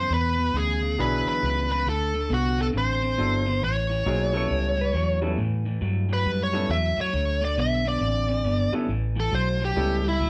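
Blues at 137 BPM in 4/4, this swaggering, soulful passage swings its eighth notes in A mixolydian and is cut from a longer piece, captured as a band playing live in one room with light reverb. A smooth, overdriven lead guitar sits up front carrying the melody, and from 5.4 seconds it takes a solo over changes that move from A7 to D5 and back to A7. Beneath it, an electric guitar through a small old amp plays a slightly broken-up, compressed riff, while a vintage fingered bass, dark, round and foam-muted, anchors the low end. A clear upright piano adds woody, intimate accompaniment from 1.0 seconds, its action noise audible. Briefly, at 4.4 seconds, a clean lap steel guitar slides in with a second line shaped by volume swells.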